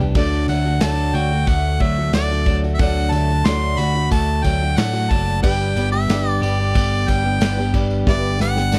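A dry, close 1970s-style studio sound frames this warm, open-road folk and heartland rock excerpt at 91 BPM in G major, where a bright harmonica with light vibrato and scooped notes carries the melody over a woody, boxy ladder-braced acoustic guitar, a slightly broken-up electric guitar riff in the background, a round, punchy picked bass up front, a natural country drum kit opening and closing with fills, a jingly tambourine, and a very quiet, mellow baby grand piano with audible action noise, moving from D to G.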